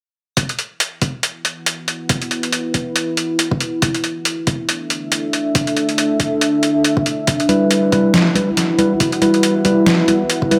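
A deep, detuned sawtooth pad with a sub octave and chorus rises slowly from 1.6 seconds, holding dark sustained chords under a filter sweep in this brooding, cavernous deep dubstep cut in E minor at 139 BPM, felt in a swung half-time. A gritty, overdriven, pitched-down sampler-style kit with a medium-tuned snare and hi-hat sits up front beside a layered, tape-tinged electronic kick set in small room ambience. At 7.5 seconds a mellow, clean tine electric piano adds stabs through dub echo, all within a lush hall reverb.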